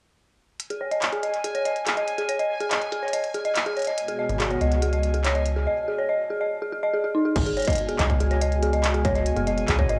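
IDM with a cerebral, intricate mood, where an eerie, inharmonic detuned synth bell plays arpeggios over a bubbling, resonant stepped-filter texture and an industrial drum kit of handclaps, smooth hi-hats and crash cymbal treated with tape echo, before a silky string machine brings sustained chords at 4.0 seconds, a metallic, up-front FM bass with tube saturation arrives at 4.3 seconds, and a distorted electronic kick drum enters at 7.4 seconds, all captured in a dry, gritty hardware recording with light reverb.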